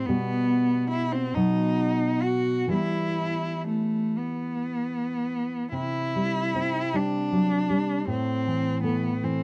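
Elegiac and solemn, this brief passage from a longer romantic duo sets a rich, bowed cello melody with expressive vibrato and portamento over a dark, thumb-plucked nylon-string guitar, both heard up front throughout. Moving freely in a rubato 6/8, the harmony drifts from B to E minor before a new section begins at 5.7 s, turning to C and then A minor. The sound is dry and close, like a 1970s studio session, with a hint of small-room ambience.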